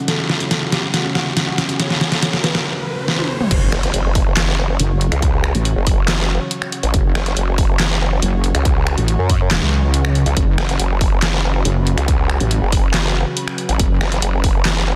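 The vowel-sweep wobble bass shapes this aggressive, chaotic heavy wobble dubstep excerpt, its nasal, formant-filtered tone sitting up front with saturation and chorus from 3.7 seconds onward, paired with a second, darker wobble bass built from detuned sawtooth and sine layers and thickened by overdrive. At 140 BPM in a half-time 4/4 feel and in F# minor, the piece opens with a build-up where a soft, felt-muted upright piano, its action noise audible, plays a mellow melody through digital delay in the background while a very quiet electronic riser climbs alongside drum fills. A lush, warbling unison pad holds sustained chords throughout, vintage and full-bodied, pumping against the sidechain beneath the mix. The drop lands at 3.5 seconds with an impact, as a punchy, tape-warm electronic kick enters alongside the layered dubstep kit, whose deep, softly clipped snare, handclaps, finger snaps, hi-hat, toms and crash sound re-recorded in a large room. 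Light reverb and digital ambience surround a dense, heavily limited modern master.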